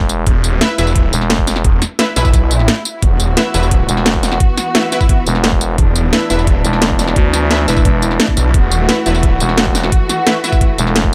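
Dark technical drum and bass at 174 BPM, futuristic and mechanical, opens with a knocking electronic kick and a drum kit of cracking snare, metallic hats and tambourine, while a snarling distorted saw bass and a thick, growling FM bass sit up front over an E5 chord, joined by bold, punchy orchestra-hit-like synth stabs trailing dub echo. A background electronic swell leads into a brief break at 2.7 seconds, after which the FM bass returns at 3.9 seconds. Muted, veiled con sordino strings enter at 3.0 seconds with sustained bowed chords that pump under the sidechain, all in a digital ambience.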